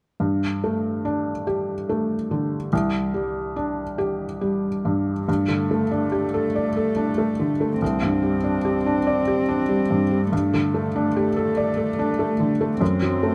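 A soft, felt-muted upright piano opens this reflective, melancholic neoclassical passage in a rubato 3/4 sway, its mellow suspended chords close and up front with audible action noise, before a single dark cello enters at 5.3 seconds with a bowed, sul tasto second line carrying gentle vibrato and a smooth top, all set in light reverb until the fragment closes on a rootless D7/F# at 13.3 seconds.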